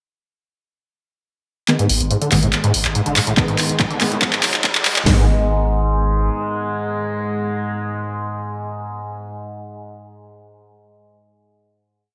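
A bright, 1980s-style digital production with a lush hall reverb frames this short, intense and industrial piece of driving peak-time techno in G# minor at 142 BPM, where a build from 1.7 seconds brings in a tape-warm analog drum machine with handclaps and hi-hats, a second punchy kit adding four-on-the-floor kick and snare under gated reverb, and a background riser. A squelchy, gritty overdriven acid bass riff and a round sine sub bass rumbling between the kicks both pump with sidechain, while filter sweeps move across the acid line and the aggressive, detuned sawtooth rave stabs moved in parallel with echoing delay. At 5.1 seconds the piece settles onto a final G#m chord held by the stabs and an evolving, overtone-sweeping drone until 9.2 seconds.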